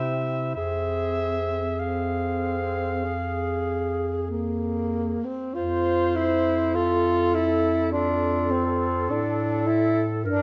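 A slow, rubato pulse of 47-52 BPM in 4/4 carries this solemn, elegiac classical piece for single-reed quartet, cut from a longer work, which opens in F minor over C and Fm chords before turning to F major at 5.5 s. A clear soprano saxophone with vibrato and a soft attack sings the melody above a warm, roomy clarinet on the second line, while a mellow tenor saxophone, also with vibrato, sits up front as accompaniment and a present bass clarinet anchors the low end. Light reverb and close, detailed microphones give the ensemble an intimate, finely etched sound.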